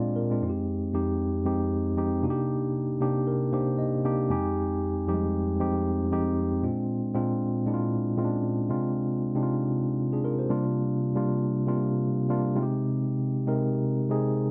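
This dry, close recording has a 1970s studio character, with a moderate booth ambience that adds only a short tail around a single instrument. That instrument is a mellow, clean tine electric piano, heard direct and up front as the sole voice. Cut from a longer piece, this disco passage moves at 116 BPM in 4/4 with a light swing on the sixteenths, giving it a driving yet sultry mood. The piano opens with a brief fill before settling into a progression of Fm7, Cm7, Fm7 and Bb7, and adds another fill at 3.0 seconds. At 8.7 seconds the harmony shifts over a C in the bass, moving through Dm7b5, Gm7 and Abmaj9 as the piano ranges from F2 up to Ab5 until the clip ends at 14.5 seconds.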